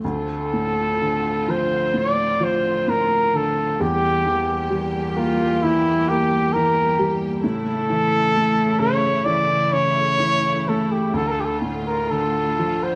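Over uneven, rubato beats at 65 BPM in 4/4, this mournful, longing Celtic slow air in D minor sets a mellow trumpet melody with light vibrato, roomy yet up front, against the woody, boxy upright piano with audible action noise and the lush, biting bowed strings holding sustained chords, all moving from Dm7 through Edim and A back to Dm in a recital hall reverb across this 13-second cut.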